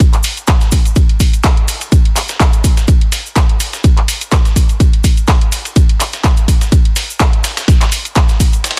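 Gritty and aggressive, this dry, densely limited house groove with a light 16th-note swing sets a punchy, tape-warm electronic kick up front beneath layered electronic handclaps and bright hats, a compressed sampler-style soul kit of hi-hat, ride and a medium-tuned snare thinned by high-pass filtering, and a grainy acoustic cabasa sitting in the background, all cut from a longer piece with a break at 8.6 seconds.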